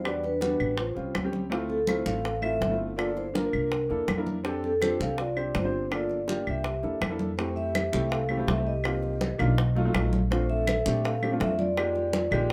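Sunny and danceable, this brisk Afro-Cuban jazz excerpt in F major at 164 BPM sets a ringing, metallic vibraphone melody over an airy clay bass ocarina line in the background, a clear vintage upright piano, and a thumpy, woody pizzicato upright bass up front, while bongos, claves and bright, damped congas join at 0.1 s, and a shift at 7.4 s moves the harmony through chords like Fmaj9 and B7#11 under light reverb.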